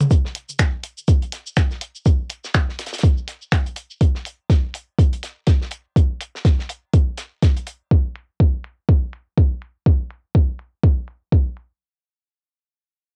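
A swung sixteenth-note groove in 4/4 drives this quirky, hypnotic techno excerpt, cut from a longer piece and built entirely from drums. A soft electronic kick sits up front through the whole passage, re-recorded in a small room and given a cassette-tape tone. Around it, a minimal click kit of finger snaps, clicky hi-hats and shaker runs from 0.0 to 11.7 seconds, its hats, percussion and room all low-pass filtered and tape-coloured. A damped 70s acoustic kit adds a hi-hat and a fat, dark snare with a rolled-off top, sitting low in the mix. Its hats pump against a sidechain and are high-pass filtered, along with its snare and room, before it drops out at 7.8 seconds. The sound is dry, with little reverb, and carries the hazy character of a home cassette recording.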